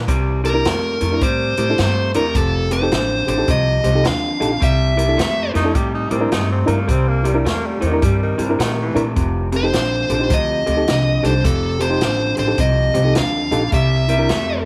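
A dark, overdriven lead guitar carries the melody in this swaggering, soulful electric blues shuffle at 105 BPM, handing over to a clear, forceful tenor saxophone with vibrato and scooped notes from 5.6 to 9.1 seconds, while a lo-fi, slightly broken-up electric guitar with a warbly pitch drift plays the riff, a woody, growly upright bass holds the low end, a swinging big-band drum kit with a punchy kick drives the groove, and a reedy electric piano with fast tremolo and light overdrive fills in the harmony in a small, lightly reverberant room.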